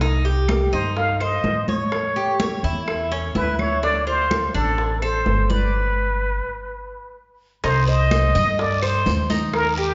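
Warm and nostalgic, this Cuban son and guajira piece moves at 126 BPM in 4/4 over a C minor progression. A plunger-muted trumpet leads up front with a breathy, wah-wah jazz tone and vibrato, over the metallic, picked arpeggios of a bright Cuban tres and a dark, thumpy gut-string upright bass. Damped, thin-skinned congas keep time alongside tight high-tuned bongos and woody, saturated claves in the background, and after a stop from 5.7 to 7.6 s a raspy, close guiro joins at 7.6 s, all within a reverberant recital-hall sound with a dull top end.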